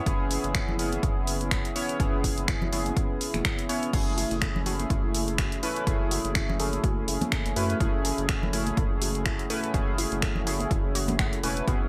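Light reverb and a bright, 1980s-style digital sheen frame this smooth, hypnotic deep house excerpt at 124 BPM in F# minor, its sixteenths swung and tuned a touch sharp. An up-front, glossy chorused polysynth plays pumping stabs with delay over a round, deep analog bass and a tape-warm punchy kick, while a drum machine adds crash, finger snaps and hi-hat through gated reverb, with bright hard-hand congas sitting in the background. A very quiet, moody ambient pad sustains the chords from C#m7/F# to F#m9, and at 3.9 seconds a warbling, lo-fi pluck enters with arpeggios coloured by chorus, phaser and delay.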